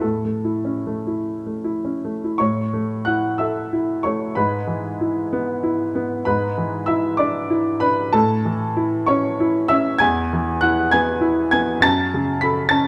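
A clear baby grand piano opens alone in A major, playing a lyrical, passionate romantic character piece in 6/8 with free rubato, its dotted-quarter pulse drifting between 48 and 69 BPM. Spanning E2 to B6, the natural, up-front tone has a short sustain, set in a moderate recital-hall reverb. The harmony moves from A through E/G# and E7/G# back to A, then to E and finally F#m at 11.8 seconds, where this 12.9-second fragment of a longer piece breaks off.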